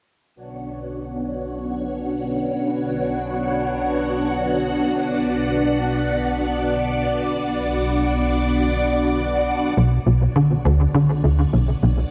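Ambient, sequencer-driven space music in free time and B minor, tuned to A4 = 441 Hz, this cosmic, hypnotic passage is cut from a longer piece and opens at 0.4 s on a lush, vintage string machine ensemble holding a sustained Bmadd9 chord, its soft-attack sawtooth tones thickened by phaser, ensemble chorus and a filter sweep. Beneath it, a fat, detuned analog bass sits low on B1 and fades in through the first section. At 9.8 s a tight, punchy sequencer bass riff pushes to the front with ring-modulated, plucky sawtooth and square-wave tones, chorus and tape echo, while a wet scoring-stage reverb with a 2.1 s decay surrounds the sound.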